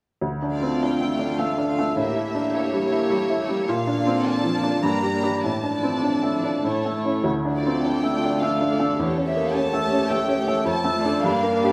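Heard through a moderate scoring-stage reverb, this brooding, passionate classical excerpt in D minor moves in a rubato 3/4 at around 98-107 BPM, with a bright, brilliant baby grand piano up front carrying the melody from 0.2 seconds, joined at 0.5 seconds by an intimate, soft-attacked violin section playing sul tasto with light vibrato on the upper melody, a rich, focused second violin line in the background, and a warm viola section giving expressive accompaniment with vibrato and portamento over chords running from Dm through A7b9, Bbmaj7 and Gm before settling on Dm/F.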